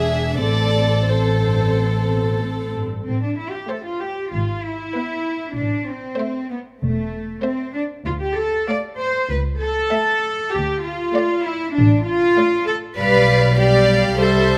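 In a flexible, rubato 4/4, this lively, spirited classical-period movement for string orchestra is heard as a fragment of a longer piece. One violin section carries the melody while a second violin section adds a supporting line, both bowed sul tasto with soft attacks and light vibrato, as violas with vibrato supply intimate accompaniment beneath. A pure, floating cello section and an up-front double bass section share the bass, and light reverb lends the close chamber sound a gentle halo as the harmony moves from Am through E/G# and Dm to G7/B.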